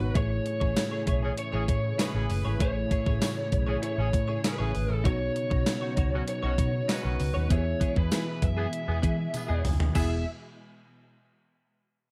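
A dark, overdriven lead guitar with slapback echo carries the melody from the first moment of this romantic, nostalgic 1980s-style pop piece in E major at 98 BPM, over mellow tine electric piano, a very quiet silky string machine, a bright, twangy clean guitar riff with ensemble chorus and slapback, tight horn stabs and a round, foam-muted picked bass. A thumpy, up-front drum machine with a gated reverb snare enters at 0.2 seconds, and a jingly tambourine sits in the background from 0.8 seconds. A drum fill at 9.3 seconds closes the Amaj7, Badd9 and E progression, all captured in a dry, close 1970s-style studio sound.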